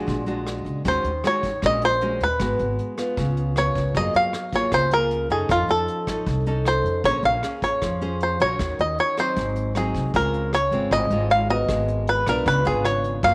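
A straight 4/4 bossa nova groove at 155 BPM drives this melancholic, wistful excerpt, set in Bb minor before moving to Db major at 10.1 s. Up front, a twangy, percussive bluegrass banjo played with fingerpicks carries the melody between F4 and F5 over fingerpicked classical nylon-string guitar, while a woody, thumpy pizzicato upright bass on gut strings and a dark vintage brush kit with a punchy kick, hi-hat and rim click, its top rolled off, hold the rhythm. Light reverb and small room ambience frame the parts as the harmony moves through chords such as Bb7alt, Ebm7, Gbmaj9 and Dbmaj7.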